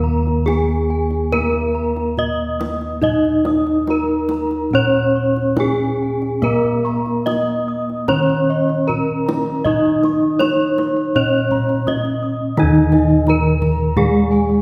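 In a straight, unhurried four-beat pulse, this serene, shimmering excerpt of Javanese gamelan sets a bright, up-front bronze metallophone melody over a second metallophone's accompaniment and a softer, higher metallophone arpeggio line, all ringing with the beating shimmer of paired tuning, while round, dark bossed gongs carry the bass, a soft-handed kendang taps in the background from 0.3 seconds, and a second set of bossed gongs adds quiet arpeggios from 6.4 seconds, the whole ensemble heard from further back in a reverberant concert hall.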